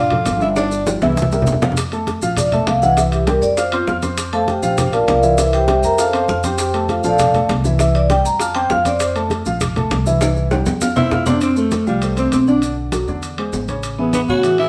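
Driven by a brisk 199 BPM straight 4/4 groove from ringing congas, metal-shell timbales, tight high bongos that drop out at 11.4 s and grainy maracas, this sunny, danceable Afro-Cuban jazz excerpt in F major features an up-front, mellow vibraphone with soft mallets and slow motor vibrato taking a solo from 1.8 to 11.4 s over a dark grand piano and a woody, growly pizzicato upright bass, while a raspy, growling tenor saxophone adds a second line at the opening and returns at 11.0 s, drum fills mark the section turns, and the band plays live in one room with moderate reverb.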